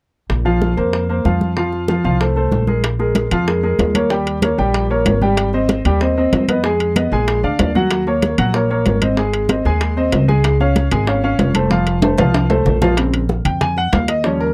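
A straight 4/4 salsa groove at 189 BPM drives this passionate Bb minor excerpt, with soft-handed, thick-skinned congas and tight, high-tuned bongos sitting in the background while a woody, thumpy pizzicato upright bass and a worn, open grand piano with long sustain play up front; ringing metal-shell timbales join at 2.8 seconds, a drum fill arrives at 11.7 seconds, and the piano takes a short solo at 13.0 seconds, all captured in a dry, close 1970s-style studio sound with light reverb.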